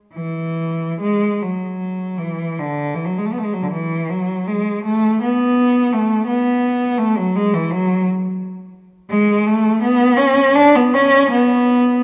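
Free rubato in 6/8 carries this serene, nostalgic classical passage for unaccompanied cello, a single bowed player whose rich, smooth, even tone with vibrato sits up front yet sounds distant in a wet recital hall, all heard through the warbling pitch drift of worn old cassette tape across a short excerpt cut from a longer piece.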